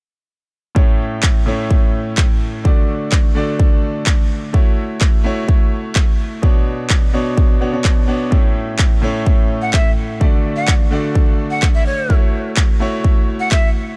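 A punchy, up-front electronic kick drives this euphoric, anthemic festival progressive house excerpt at 127 BPM in A major, with layered electronic handclaps beside it and a brilliant, intimate baby grand piano whose action noise, long sustain, sidechain pumping and dub echo carry chords from A through D, F#m7 and Bmadd9, while a breathy jazz flute with crisp chiff, vibrato, 12-bit sampler grit and delay joins at 9.6 seconds over a small room ambience.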